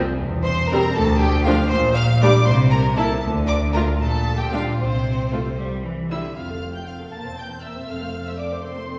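A quick classical-period string orchestra movement in F major, stormy and urgent, moving in a rubato 6/8 at 79 BPM in dotted quarters, where warm, vibrato-rich violas fill in the accompaniment and smooth, distant cellos join up-front double basses on the bass line, while at 0.4 s two lush, expressive violin sections enter, one singing the high melody from further back and the other a second line below it, all set in a wet scoring-stage reverb heard from a distance in this excerpt of a longer piece.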